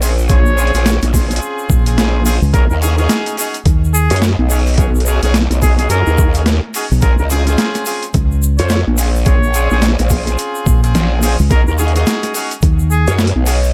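This swaggering, funky glitch hop passage, cut from a longer piece, opens on tight, brilliant horn-section stabs carrying sidechain pumping and delay. Beneath them sit a growling, wobbling chorused bass, a gritty, overdriven sampler-style boom bap kit with a high-tuned snare and hi-hat, and a grainy egg shaker. At 0.3 seconds a clear jazz-style solo trumpet with vibrato takes the melody, roughened by vintage 12-bit sampler grit and delay, while a thumpy, pitched-down electronic kick drops in with overdrive. A dark, round fingered electric bass enters at 1.7 seconds and sits up front with the saturated growl bass, giving the low end heavy weight under a swung 16th-note feel. The harmony alternates between two jazzy extended chords, and the whole mix stays dry, with little reverb.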